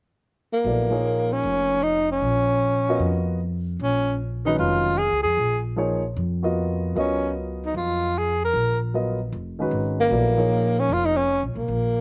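Intense and cool, this short jazz cut swings at 152 BPM in Bb phrygian over a Bbm7 chord, with a breathy, whispered tenor saxophone taking the intimate solo melody from 0.5 seconds, full of vibrato, scooped notes and a soft attack under a slapback echo, while a warm grand piano, also touched with slapback echo, comps until 11.2 seconds and a woody, growly pizzicato upright bass holds the low end to the close at 12.0 seconds, all captured dry and up front in an outdoor setting.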